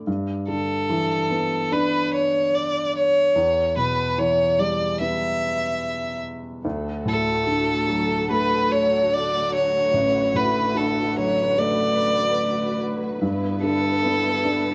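Tender and emotional, this slow pop excerpt moves at 73 BPM in a straight 4/4, settled in D major with a tuning slightly above standard pitch. An upright piano carries the accompaniment from the very start, its woody, intimate tone close to the listener, with audible action noise and a vintage character. Just after it, at 0.5 s, a solo violin takes the melody, bowed with light vibrato and an even, silky line that sits up front, just above the piano in level. At 6.6 s a dark, lush studio string section joins with sustained chords, its bowed ensemble sound adding vibrato and a woody depth beneath the lead. The harmony passes from G6 to Em, then rests on D before returning to G6, while the players share one room and a moderate large reverb gives the whole fragment a gentle sense of space.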